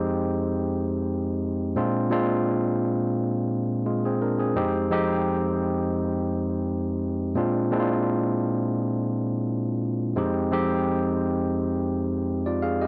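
A gritty, barky tone sits up front in this short, lightly reverberant recording, cut from a longer soul piece. A single overdriven tine electric piano plays alone throughout its 12.9 seconds, heard through a combo amp and spanning a range from F2 to F5. The music moves in free time in F dorian, alternating between Fm7 and Bb7 chords before settling back on Fm7 at 10.2 seconds. The mood is bittersweet yet silky, the rough edge of the amp contrasting with the smooth harmony.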